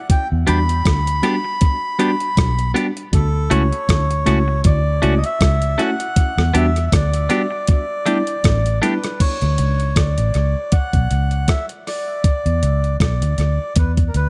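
A reedy, breathy melodica opens this romantic, tender lovers rock reggae excerpt, its melody trailed by tape echo, as a crisp 8-bit drum machine with a thumpy kick, hi-hat, rim click and crash cymbal joins almost at once, sounding tape-warm and up front with echo of its own. A dark, round, foam-muted fingered bass enters at 0.3 seconds, sitting up front beneath a gently swung groove. At 0.5 seconds a mellow tine electric piano, heard through built-in speakers and touched with tape echo, and a bright, twangy clean guitar playing compressed stabs fill out the harmony over chords moving from Em7 to Dmaj7 and on to A7sus4. Both the piano and guitar drop out by about 9.1 seconds, leaving melodica, drums and bass to carry the closing passage over Dmaj7 and E5. The sound is dry and close, with little reverb, giving the nasal melodica and round low end an intimate presence.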